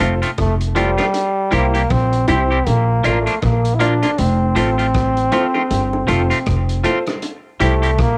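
Roots reggae at a laid-back 79 BPM with a swung sixteenth feel, this sunny excerpt cycles through F, C and B-flat as a bright, lightly vibrato trombone carries the melody up front, coated in cassette tape and tape echo like the clean, twangy picked electric guitar beneath it. A woody, thumpy upright bass with gut strings sits prominently at the bottom, while an intimate upright piano with audible action noise adds long-sustaining stabs. A gritty, saturated breakbeat kit with a punchy kick, hi-hat and rim click, plus tight high-tuned bongos played with soft hands in the background, fill out a small-room home cassette recording with light reverb.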